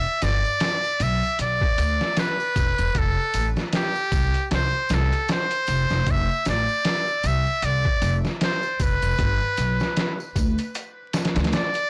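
The recording sounds blown-out and overdriven, with vinyl crackle and a small room ambience coloring this smoky, melancholic trip hop fragment cut from a longer piece. A trumpet with a metal mute carries the jazz-style solo melody from the start, its buzzy, breathy tone thin yet present, with light vibrato, scooped notes and a tape echo trailing behind. Up front beside it, a woody, growly pizzicato upright bass holds down the low end until 11.5 seconds. A gritty, pitched-down sampler-style drum kit enters at 0.2 seconds with a thumpy kick, medium-tuned snare and hi-hat over a swung sixteenth feel, while tambourine and triangle sit close and dry in the background. The harmony moves from Em7 to F and then to G.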